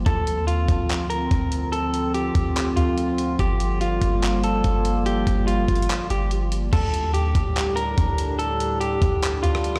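A slightly broken-up electric guitar sits up front with spring reverb and tape echo in this hazy, melancholic excerpt of atmospheric cloud-rap at 144 BPM in a half-time feel. It is backed by a warbling, detuned tape-like pad with chorus, a deep, round 808-style bass, and a gritty, compressed soul sampler-style drum kit with a thumpy kick, handclaps, rim clicks, hi-hat and crash. Everything moves from Dm7 to Gm7 before settling on Dsus4 at 6.7 seconds, played through a big sound system in a bare, stony room.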